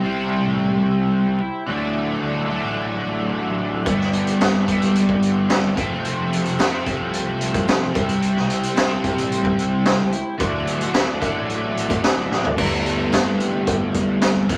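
Trippy and kaleidoscopic, this psychedelic rock excerpt opens on an up-front, double-tracked overdriven guitar riff run through a rotary speaker, with a mellow, vibrato-tinged combo organ holding sustained chords and a punchy fuzz bass tucked in the background. A gritty, saturated garage drum kit with a high-tuned snare kicks in at 3.9 seconds, followed by a faint, jingly tambourine, and a drum fill at 12.3 seconds leads into a new section as the chords cycle through C, Dadd9, G6 and Fadd9. A wet small-room reverb and vinyl crackle lend the sound a dusty character.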